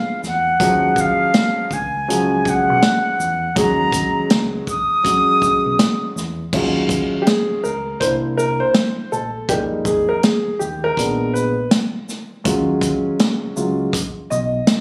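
Jazz-hop with a mellow, cool, swung feel, cut from a longer piece, opening with a pure, straight-toned concert flute melody over a woody upright piano and a dark, round fingered electric bass. The flute stops at 6.1 seconds, and from 6.5 seconds the piano takes a smooth solo, while the vintage acoustic kit of punchy kick, snare, hi-hat, shaker and crash keeps time with a rolled-off top throughout. The sound is close and roomy, as if captured on a phone in a small club, with a moderate echo-chamber reverb around it.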